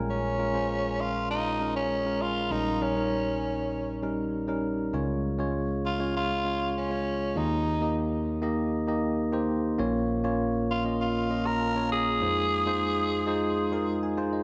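Dramatic and moody, this pop excerpt moves at 99 BPM in Bb dorian, with a bright, bell-like tine electric piano providing accompaniment up front while a raspy, gritty tenor saxophone carries the solo melody with vibrato and an analog delay. Everything sits in a dreamy mix soaked in a long plate reverb, and the harmony moves from Bbm7 through Eb7/Bb to Db at 4.9 seconds as a new section opens. The electric piano closes with a clean fill starting at 13.4 seconds.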